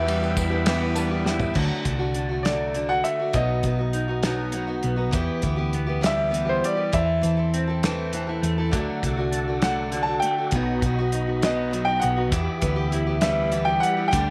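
A clear, smooth concert grand piano with a vintage tone carries the melody through slapback echo in this wistful, dusty folk and heartland rock excerpt in E minor, moving at 67 BPM in a straight 6/8. Beneath it, a picked acoustic archtop guitar with fresh strings and finger squeak, a slightly broken-up electric guitar riff with lush chorus, and a round hollow-body electric bass play throughout, joined by a thuddy, cloth-damped drum kit with dark cymbals. A woody upright piano and jingly tambourine are heard only in the opening moments, with the piano fill ending by 1.6 seconds, while a reedy tonewheel organ with key click and slow rotary speaker sits in the background at the start and returns from 8.7 seconds, all in light small-room ambience.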